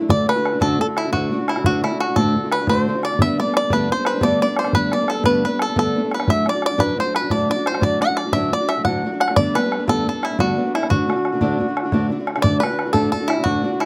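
Heard dry and close, with fine detail and very little reverb, this lively, cheerful Celtic folk slip jig is cut from a longer piece and runs in 9/8 at 117 BPM (counted in dotted quarters) with a straight feel in D mixolydian, tuned to A4 = 436 Hz. Up front, a bright, twangy bluegrass banjo played with fingerpicks carries the percussive melody, while a boxy parlour steel-string acoustic guitar fingerpicks the accompaniment from its low D2 up to F#4. Behind them, a mellow, reedy single-reed accordion sits in the background with a round, full second line in the same range as the banjo. A damped, tight bodhran with a vintage, band-limited tone supplies the percussion. The harmony moves between D and Gadd9, and the tune's opening section repeats at 12.4 seconds before the passage breaks off at 13.9 seconds.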